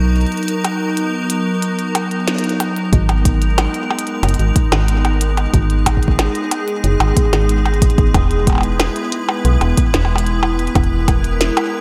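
IDM in G# minor at 92 BPM with a glitchy, eerie mood, cut from a longer piece: an icy, crystalline glass pad with chorus holds sustained chords from Bmaj7 to G#madd9 and E over a dark, metallic FM bass, while a glitchy kit of clicky hats, a tiny snare and percussion blips with delay enters at 0.2 seconds, then a deep, tape-warm electronic kick arrives at 2.9 seconds after a break and a band accent, all in a lightly reverberant space.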